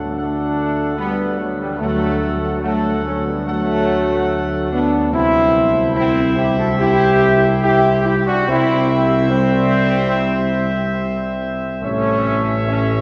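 A bright, close-miked trombone section carries the sustained chords up front in this solemn, majestic classical brass passage at 72 BPM, alongside a mellow French horn section with light vibrato, a distant trumpet section singing the melody, and an up-front solo tuba on the bass, all moving from D to C and arriving on A at 11.8 seconds beneath a cathedral reverb that lingers for 6.1 seconds.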